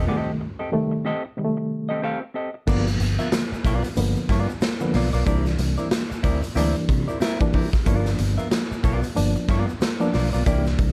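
A raw garage drum kit sits up front in this strutting, playful funk excerpt. It is saturated and gritty, with a punchy kick, a medium-tuned snare, hi-hat and crash cymbal ringing in a bright stone room that pumps with the groove. Before the drums arrive at 2.7 seconds, the piece opens on a break in which a bright, reedy electric piano plays stabs with a fast tremolo over a rootless F9. A dark, clean semi-hollow guitar adds fingered accompaniment, and a vintage muted bass supplies a round, foam-muted low end. Once the drums enter, a very quiet, grainy tube shaker joins them, and the harmony moves through G7#9, C9 and back to G7#9 on a swung sixteenth-note feel with light reverb.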